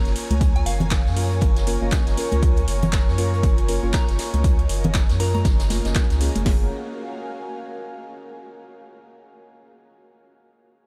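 Deep house with a sunny, swung feel, this excerpt rides a punchy, overdriven analog drum machine up front, layered with a deep house kit's metallic hats and handclaps, a vintage kit's rolled-off hi-hat and snare in the background, and close, dry congas struck with hard hands. A round, dark analog bass and nasal, gritty chord stabs with analog delay pump under the sidechain alongside a smooth, warbling analog pad and a breathy, phased pad, while a faint, shimmering string machine of violins and a pure FM bell melody float behind, all within a light reverb. Most parts fall away by about 6.7 seconds, leaving the airy pad to sustain alone until 8.4 seconds.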